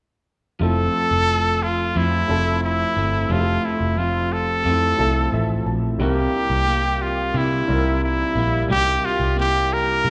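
A bright, smooth-topped trumpet carries the melody up front from 0.6 seconds, singing with vibrato in a pop style over a hazy, sunny indie pop groove at 89 BPM in F major. Beneath it, an electric guitar through a small old amp adds a slightly broken-up, compressed picked accompaniment with a warbly pitch drift. A dark, round, foam-muted picked electric bass anchors the low end, while a worn, woody, slightly detuned upright piano sits in the background and steps forward with a short fill from 5.0 to 6.0 seconds. The harmony rests on Fmaj7 before moving to C7 at 6.0 seconds. The whole passage, cut from a longer piece, is bathed in the wet reverb of a church or concert hall with a 1.7-second decay.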